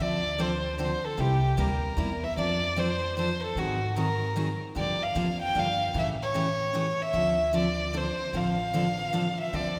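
Acoustic string swing in the jazz manouche style: a swinging, fiery piece at 151 BPM in 3/4, in D minor, with a lilting swing on the eighths. An intimate, up-front bowed violin carries the melody with light vibrato, an airy sul tasto tone and soft attacks. Beneath it, a bright, full-bodied jumbo steel-string guitar picks the accompaniment through changes from Dm7 to C7, F6, G#9, Gm7 and A7, while a woody, thumpy pizzicato upright bass anchors the low end, all three bathed in the long, wet reverb of a church or concert hall in this short fragment of a longer piece.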